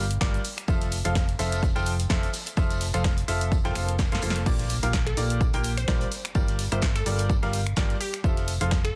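A clear, worn grand piano riff with short sustain, delay and sidechain pumping drives this euphoric, joyful piano house excerpt at 127 BPM in F major, moving through Gm7, Fmaj7 and Bb6 over a swung 4/4 groove. Beneath it, a dark, round hollow-body fingered electric bass with tube saturation pumps alongside a punchy electronic kick, a punchy analog drum machine with snaps, shaker and crash, a very quiet tambourine, and a gritty, saturated breakbeat kit sitting in the background with filtered hats and snare. A quiet electronic swell and impact arrives at 3.7 seconds, a drum fill leads into the drop at 4.5 seconds, and a glassy, crystalline wavetable pluck with chorus, tape colour and delay enters at 5.1 seconds, all within a dense, heavily limited modern master.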